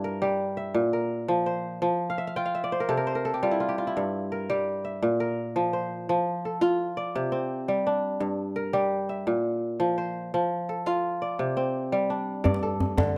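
In a straight 12/8 at 113 BPM counted in dotted quarters, this flowing, reflective West African traditional excerpt in G dorian centres on an up-front kora whose mellow, ringing, crisp fingerpicked arpeggios span G2 to G5 over a repeating Gm–Bb–F–C cycle, adding a fill from 2.1 to 4.0 seconds, before a deep djembe played with soft hands enters briefly at 12.5 seconds, captured with light reverb and close, detailed microphones.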